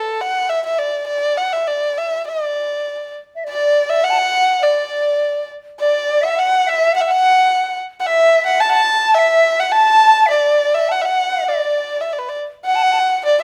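Chinese traditional chamber music in a pastoral, festive mood, this rubato passage in D gong mode at 103 BPM opens with a dark, woody erhu played up front with vibrato and portamento, joined at 3.4 seconds by a bright large dizi whose buzzing membrane and pure bamboo tone sit in the background as a tongued second line, all caught by close, detailed microphones with light reverb.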